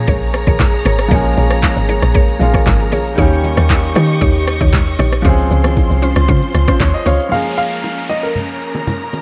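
A punchy, woody log drum bass sits up front in this hypnotic, soulful amapiano excerpt at 116 BPM in Bb dorian, driving a drop over Bbm7, Eb7 and Dbmaj7 until it stops at 7.2 seconds. It is joined by a soft-kicked, tape-toned R&B kit with handclaps, hi-hat, rim click and shaker, background congas and bongos, and a round, detuned synth pluck firing stabs through chorus and digital delay. A clear grand piano accompanies throughout beneath lush, bowed strings with vibrato. From 7.1 seconds a dark, worn second piano carries a brief, intimate melody with audible action noise and delay. At 7.3 seconds the music shifts as an electronic downlifter sweeps underneath, all within a light studio reverb.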